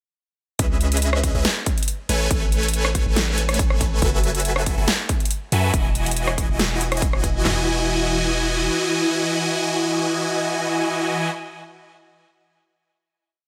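A bright, playful future bass drop in E major at 140 BPM and half-time bursts in at 0.6 s with lush, full-bodied detuned supersaw chords, up front and treated with phaser, digital delay and sidechain pumping, moving through C#m7, Amaj9, F#m11 and Emaj9 in held chords with syncopated pushes that throb in tempo, over a deep, sine-toned 808-style bass locked to the chord rhythm and also sidechain-pumped, and a layered big-room electronic kit of punchy kick, toms, handclaps, rim clicks, a huge snare and metallic hi-hat rolls in light reverb, until the drums and then the bass at 8.7 s stop, leaving the supersaws to hold a final chord until 11.3 s.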